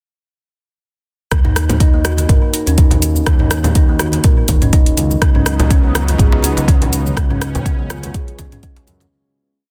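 This short afro house piece in Eb minor drives along at 123 BPM with a swung sixteenth-note feel. It opens straight into its drop at 1.3 seconds with a deep, tape-warm, up-front four-on-the-floor kick. Alongside it comes a programmed afro-pop kit of metallic hats, cabasa, rim clicks, low toms and a softly clipped backbeat, plus a smooth sawtooth-and-square synth bass playing a dub-style line in the background under sidechain pumping. A moment later a woody kalimba enters with a ringing, fingertip-plucked sixteen-step sequence, mellow and mid-forward, carried by delay and pumping, while very quiet, low-tuned congas interlock beneath it. At 5.2 seconds a detuned analog pad arrives on a Db9sus4 chord, its soft attack, chorus and moving notch adding a bright sustained wash, and a tight, cracking djembe soon joins from the background with a hand-drum cross rhythm. The mood is earthy and driving, with little reverb and a dense, heavily limited modern master, and a fade-out begins at 6.5 seconds.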